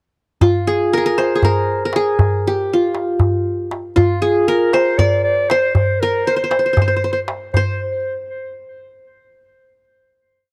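In a straight 7/8 metre, this short, melancholic and soulful Turkish makam piece opens at 0.4 seconds with a bright-edged, plectrum-plucked qanun carrying an ornamented modal melody up front, beside a crisp, deep metal-shell darbuka working a low and high stroke pattern. At 4.0 seconds a mellow clarinet in classical style joins on the same line with its own ornaments, touched by tape echo, before the ensemble settles on a final note from 7.5 seconds. The sound is dry and close, in the manner of a 1970s studio.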